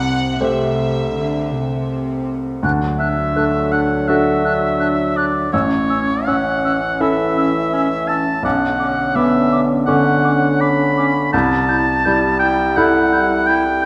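A tender, uplifting cinematic film score cue in D major at 83 BPM, played rubato in 4/4 and cut from a longer piece. It opens with a rich violin section singing a brief, soft-edged melody that fades by 1.9 seconds, and a cello section bowing sul tasto beneath an intimate baby grand piano, whose action noise and long sustain stay up front throughout. At 2.6 seconds the cellos give way as a mellow French horn section holds chords, a bright clarinet and pure concert flute add background lines, and a clear oboe with light vibrato steps forward at 3.0 seconds, all bathed in a wet scoring stage reverb over a progression from Dadd9 through Bmadd9 back to Am7/C.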